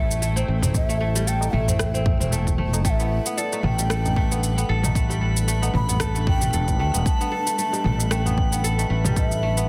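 A growly, up-front fretless electric bass anchors this organic downtempo excerpt at 114 BPM in 4/4, its sustaining low notes pumping against the sidechain beneath a gentle 16th-note swing. Above it, a hollow bass bansuri carries the airy, close-miked melody with vibrato and tongued notes, trailed by digital delay, while a crisp, fingerpicked kora rings out arpeggios through its own delay. A cloudy granular pad sits in the background, holding blurred, detuned chords that move from Am7 to Gadd9 at 2.9 seconds and breathe with sidechain pumping inside their reverb. The rhythm comes from an overdriven deep house kit of rim click, shaker and toms, a deep, overdriven electronic kick that arrives at 0.7 seconds, and a very quiet, high-tuned tabla that rings close and acoustic. From 3.1 seconds a glassy, bright texture of drifting overtones glides in behind everything else with chorus and reverb, completing an earthy, warm mood set in light digital ambience and a dense, heavily limited modern master.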